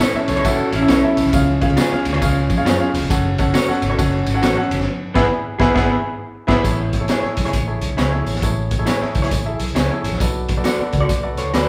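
Danceable and warm, this swung 1960s-style soul excerpt rides a gritty, saturated breakbeat kit with a punchy kick and high-tuned snare, a round, foam-muted electric bass and an intimate grand piano with audible action noise, while two slightly broken-up electric guitars through a small old amp sit in the background, one playing lo-fi, compressed stabs and the other a picked riff that surfaces at 0.3, 5.1 and 11.4 seconds, as very quiet congas and a jingly tambourine add color, the band hits an accent at 4.9 seconds, and a large studio reverb gives the live-in-one-room performance its glow.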